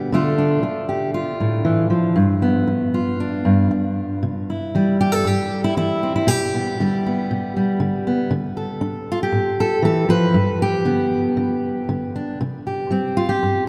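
A fingerpicked steel-string acoustic guitar opens this hopeful solo folk piece at 117 BPM in C major, its dark, up-front tone carrying audible finger squeak as it moves from Dm to G before settling into a passage around C, G/B, Dm and G that comes to rest on C5 at 12.4 seconds. The guitar sits inside a wet cathedral-like reverb with a long 5.8-second decay, giving the straight 4/4 picking a spacious church or concert hall setting. The clip is cut from a longer piece.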